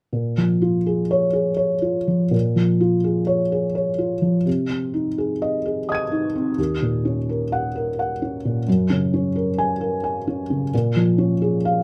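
A felt-muted upright piano plays alone from the first moment, its dark, thick-felt tone sitting up front in a light reverb and ranging from Eb2 to Eb7. This intimate, reflective neoclassical minimalist piece in Bb minor moves in a rubato 3/4 at roughly 78-89 BPM, with a short opening passage giving way at 2.3 seconds to a longer second section. The harmony drifts from Bbm7 through Ab/C, Ebm7 and Gbadd9 before settling back on Bbm7 at 10.7 seconds, as the fragment ends mid-piece.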